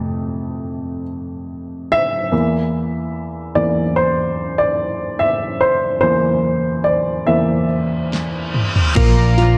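At a straight 73 BPM in 4/4, this hopeful, heartfelt pop ballad opens with a woody, up-front upright piano playing alone over F and C7/E, set in a lush hall reverb with a dark production. Near 8.0 s an electronic reverse cymbal and a drum fill with a punchy kick and fat snare lead into a Bb chord at 9.0 s. There a prominent fretless bass with ensemble chorus, a bright, twangy twelve-string electric guitar picking arpeggios through spring reverb, and a shimmering, retro pulse-width pad join just as this clip from a longer piece ends.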